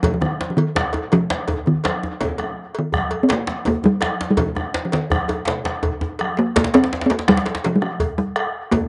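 A close, dry talking drum carries the melody up front from the first moment of this driving, powerful West African drum ensemble excerpt in a straight 12/8, joined by a metallic cowbell, a round, distant bombo and congas that ring softly in the background. Two djembes fill out the groove, one tight and cracking with metal rattles and the other warm and deep, and a drum fill bursts through between 5.7 and 6.6 seconds before the deeper djembe drops out at 7.7 seconds. The outdoor recording sounds dry with a dulled top end, and slapback echo trails the bombo, congas and the deeper djembe.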